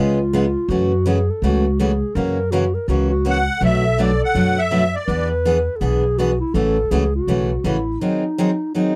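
Lively and playful, this cut from a longer acoustic string swing piece in the jazz manouche style moves through a chord sequence from C#7 to F#m7, Bm7, E7 and A6 under a dry, close studio sound with a 1970s feel. A bright, full-bodied picked steel-string guitar carries the accompaniment with audible finger squeak, while a woody, thumpy upright bass in gut strings plays pizzicato up front until 8.0 seconds, and a breathy, whispered clarinet with vibrato and scooped notes weaves an intimate second line throughout. Briefly, from 3.3 to 5.3 seconds, a reedy musette accordion steps forward with a shimmering melody.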